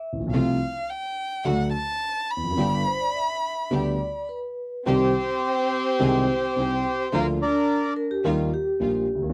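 This is a dry, close 1970s-style studio recording with light reverb, a short fragment cut from a longer tango in 4/4 at 107 BPM, played with a rubato feel and a sultry, melancholic mood. A mellow concert grand piano with deep bass carries the accompaniment up front, while a lush, focused studio string section adds bowed stabs colored by vibrato. The opening features a dark violin, a single bowed player with a soft attack, expressive portamento and a smooth top, which takes a solo until 4.9 seconds. A vibraphone played with medium mallets runs as a second line throughout, its metallic, ringing tone shimmering with a fast motor vibrato. At 4.9 seconds the music settles into C minor and a reedy, vintage, band-limited bandoneon enters with the melody, sitting close and forward in the mix, before dropping out at 7.9 seconds.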